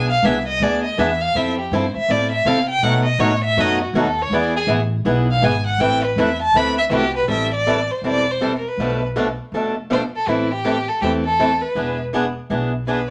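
Jazz manouche in a virtuosic, swinging mood, this cut from a longer piece features a close, up-front bowed violin that carries the melody with vibrato and portamento and plays a solo from 0.0 to 7.3 seconds, over a bright, boxy picked acoustic guitar and a woody, thumpy pizzicato upright bass on gut strings, all in a moderate studio reverb.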